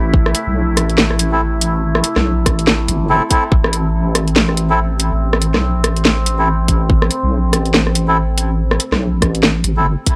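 Dark and heavy, this deep dubstep excerpt in A minor moves at 142 BPM with a swung half-time feel, built on a deep, detuned wobble bass with chorus, a tight, up-front electronic kick that drops out between 3.6 and 6.7 seconds, a garage kit of cracking snare, rim clicks and warm hi-hats, reedy, nasal melodica stabs trailing dub echo from 1.3 seconds, and a resonant sawtooth drone of moving overtones holding sustained chords, all set in a dry, gritty digital ambience.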